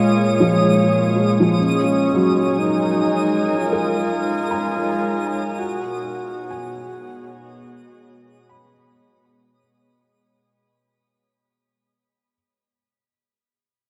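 A slow, straight 4/4 pulse at 60 BPM carries this serene, weightless ambient excerpt, tuned slightly below standard pitch and fading out across its first 9.6 seconds over A#m7, G#sus2 and B69 harmonies. An up-front, warbling, nostalgic tape-like pad holds detuned lo-fi chords, while a soft, felt-muted upright piano plays intimate arpeggios. A calm, organ-like drone with phaser sits in the background, and a twinkling granular texture adds sparkling octave-up shimmer. A close-miked, airy, reedy alto flute sings a straight-toned, tongued melody. It is all soaked in a dreamy cathedral reverb and cassette tape character, with the piano ringing on alone until 12.3 seconds.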